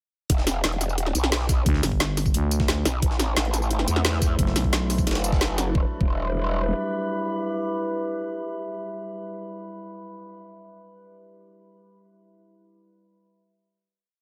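Mechanical and futuristic, this dark technical drum and bass piece in E minor at 176 BPM opens its drop at 0.3 seconds with a knocking, overdriven electronic kick; a tight, overdriven drum kit with woody snare, bright hats and tambourine; a very quiet, gritty, pitched-up looped breakbeat; and an aggressive, wobbling growl bass with chorus and sidechain pumping. At 1.7 seconds a thick FM growl bass with tube saturation joins, its chopped phrases answering the first bass, and from 3.5 seconds an eerie, metallic, inharmonic drone with slow attack, chorus and reverb enters and sustains through the final E minor chord.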